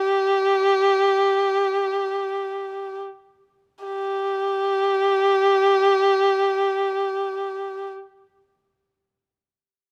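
Tender and graceful, this short passage of Chinese traditional music unfolds in free time, cut from a longer piece. A single bowed erhu carries it alone, sitting up front with a dark, woody voice centred around G4. The player colours the notes with vibrato and slides between pitches with portamento. The opening phrase slows down until 3.8 seconds, where a second phrase begins and carries the line on until the recording ends at 7.9 seconds. Close, detailed microphones capture the instrument in a light reverb, keeping the sound intimate.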